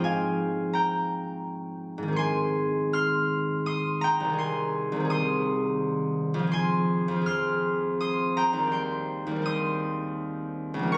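Captured on a phone in the room, this brief cut from a longer classical piece has a compressed, roomy sound with moderate reverb and a club-like ambience around the instrument. A solo concert harp sits up front with a bright, ringing, fingerpicked tone, spanning C2 to F6 in a serene, peaceful waltz-time rubato at around 83 BPM. The harmony moves gently through Fm/Ab, Ab, Ab/C and Fm before settling on Cm/Eb at 8.7 seconds.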